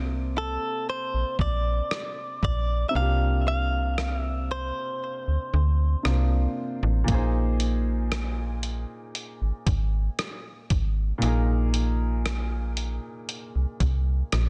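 Late-night and sensual, this short contemporary R&B passage moves at a slow 58 BPM, with a clear, intimate grand piano and a snappy, metallic FM slap bass underpinning a shift from C9sus4 to Bb9sus4 at 7.1 seconds. A clean, picked electric guitar, recorded direct and carrying delay, sings the melody up front from 0.4 to 6.5 seconds. A dusty sampler-style kit of hi-hat, thumpy kick and rim click arrives at 1.4 seconds with 12-bit grit, all within a dry, dense and heavily limited modern mix.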